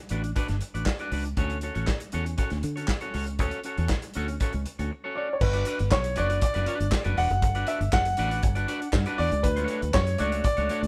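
A straight 4/4 disco groove at 119 BPM sets a danceable, glamorous mood, with a tight-kicked soul drum kit of dark cymbals, handclaps and a medium-tuned snare sitting up front beside a round, foam-muted fingered electric bass, while a bright, picked clean electric guitar plays filtered accompaniment over Gmaj7 and Dmaj7 chords. At 5.2 seconds a concert grand piano enters with an intimate melody, its action noise audible and its tone natural. The band sounds like it is playing live together in one room with light reverb, and the recording is cut from a longer piece.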